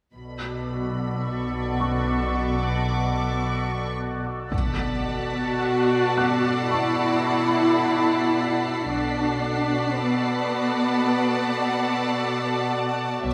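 A slow, straight 4/4 pulse at 55 BPM underpins this ominous, mysterious cue in B minor, a cinematic suspense score cut from a longer piece and resting on a Bm7 chord. From the opening, a high violin section plays a warm, focused, bowed texture while a bubbling, detuned sawtooth synth holds sustained chords through chorus and its own reverb, its resonant filter jumping in random steps. Beneath them, an up-front cello section and an expressive double bass section anchor the low end with lush, vibrato-rich tone. A muted upright piano, dark and boxy with audible action noise, enters very quietly at 1.8 seconds. At 4.5 seconds a huge, bright impact lands as the second section begins, and two more violin lines arrive: a smooth melody held high and an even second line beneath it, soon joined by a viola section whose portamento adds expressive warmth in the middle register. The whole ensemble sits in a moderate scoring-stage reverb that lends the strings a spacious, cinematic depth.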